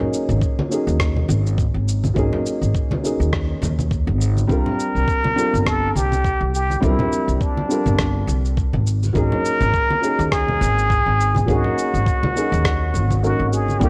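Relaxed and blissful, this sunset chillout excerpt moves at 103 BPM with a gentle swing, as a dark, boxy baby grand piano with audible action noise and a woody, up-front pizzicato upright bass with tube saturation settle over ringing background congas, a gritty sampled kit of shaker, congas and rim click, and a thumpy electronic kick. At 4.5 seconds a breathy trumpet with a plunger mute takes the solo, its wah-wah tone, light vibrato and scooped jazz phrasing set forward and trailed by digital delay. The kick drops out at 13.2 seconds and a soft, hollow kalimba note sounds at 13.8 seconds, all wrapped in a small room's light reverb and the warbling pitch drift of worn cassette tape.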